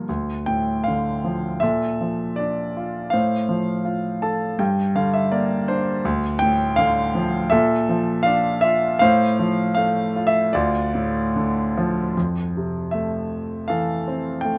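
Flowing freely in a rubato 4/4, this dark, reflective classical excerpt features a solo grand piano, clear and intimate, moving through minor-key harmonies with a brief fill from 3.9 to 6.0 seconds before shifting into a new section at 12.2 seconds. Close, detailed miking places the polished instrument up front in a dry room, where the audible action noise adds a sense of presence to the lyrical playing.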